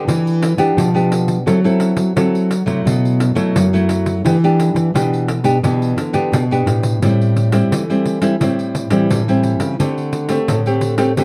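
Two classical nylon-string guitars open this lively, nostalgic samba and choro excerpt: one plays thumb-plucked accompaniment on fresh strings, while the other carries a woody, fingerpicked bass line on old strings, sitting up front in the mix. A softly hand-played pandeiro adds a jingly, close and dry pulse from 0.1 seconds, as the harmony moves through Em7, F#m7b5 and B7sus4 before shifting to Am7 at 7.0 seconds and D7sus4 at 9.8 seconds. The production is dark and warm, with light reverb.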